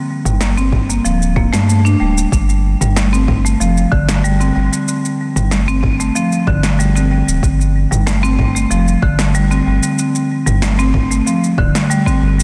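A lush hall reverb wraps a dense, heavily limited mix in this meditative, earthy slice of organic downtempo at 94 BPM, cut from a longer piece. A woody, close-miked marimba played with hard mallets spins bright, percussive arpeggios through a delay, up front beside a round, sine-like sub bass that holds deep, sustained notes under a Gmadd9 chord moving to a rootless F at 2.3 seconds. An overdriven deep house kit adds shaker, toms and a punchy snare, while an electronic kick with a deep, layered thump enters at 0.7 seconds.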